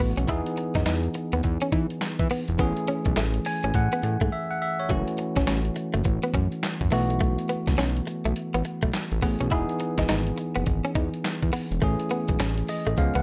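A swung sixteenth-note groove in 4/4 drives this slick, confident new jack swing cut from a longer R&B piece. The sampler-style drum kit sits up front, compressed and pitched down, with a gritty, thumpy kick, a medium-tuned snare, handclaps and hi-hat, while a grainy acoustic tube shaker joins in the background from 0.2 seconds. Beneath it, a fat, detuned sawtooth bass with a filter pluck and fast attack holds thick, sustained, evolving low notes up front. A bell-like, bright tine electric piano carries the accompaniment through Emaj7, Amaj7, F#m7 and B7sus4 changes, adding fills from 3.2 seconds and again near the close, with a brief break at 4.3 seconds. A clean, picked electric guitar, recorded direct and compressed with analog chorus, plays a riff throughout, all set in a digital ambience.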